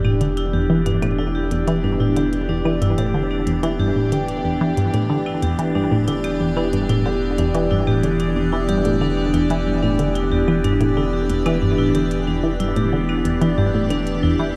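A tight, detuned sawtooth synth drives a bright, chorused riff through tape echo. An up-front wavetable pad morphs through a phaser, while a hard-mallet vibraphone rings out metallic arpeggios with a medium motor vibrato and tape echo, over a deep, round sine sub bass on E1. Clicky electronic claves and hi-hats sit in the background, and the dark production is bathed in huge ambient reverb, holding one Em7 chord throughout this cosmic, mysterious passage cut from a longer piece.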